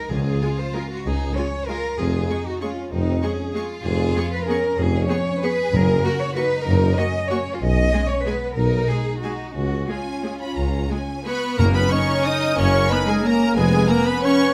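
Sweeping and elegant, this orchestral ballroom waltz in 3/4 moves at 168-208 BPM with rubato, opening in Db major and shifting to F# major from 3.9 seconds. A lush, close violin section carries the high melody over a second violin line with an intense edge, a focused viola accompaniment, a dark, woody cello section up front, a smooth double bass section and a mellow tuba, while timpani with round, soft-mallet strokes enter briefly three times. From 11.2 seconds the winds and brass join: soft-attack trumpet stabs, very quiet horn chords, a distant, pure silver flute, a vintage clarinet, a cor anglais in the background and a bassoon, all in a recital hall with moderate reverb before the passage cuts off at 14.5 seconds.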